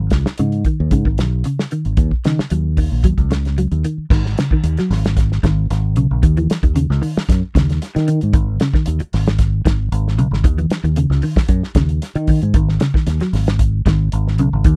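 Afrobeat with an intense, funky drive in a straight four, cut from a longer piece and captured as a dry, close 1970s-style studio recording. Up front, a round, fingered electric bass carries the low end beside a damped 70s drum kit with a tight kick, medium-tuned snare, hi-hat, and dark crash, its top rolled off. A clean, picked electric guitar plays arpeggios through an ensemble chorus, sitting lower in the mix as the harmony settles from minor chords into suspended and open fifth voicings after 4.1 seconds.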